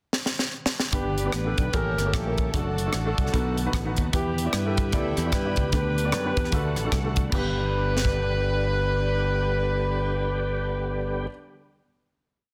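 A driving two-beat praise groove at 150 BPM in 4/4 with a swung feel opens this short, jubilant uptempo gospel piece in G major, as a crisp fusion drum kit with a high-tuned snare and tight kick plays a fill from 0.1 s before a breakdown begins at 0.9 s. Up front, a dark saxophone section with light vibrato states hook phrases over a round, punchy fingered electric bass walking and running with slides and chromatic approach notes, while an intimate concert grand piano with audible action noise plays rhythmic close-voiced chords. Behind them, a thick tonewheel organ with overdrive, key click and slow rotary speaker holds drop2 chords with grace notes, and a lush, distant string section sustains a bowed pad. The hopeful ensemble lands on a final G chord at 7.3 s and rings out after the drums stop at 8.1 s, all in a small room under a dense, heavily limited modern master.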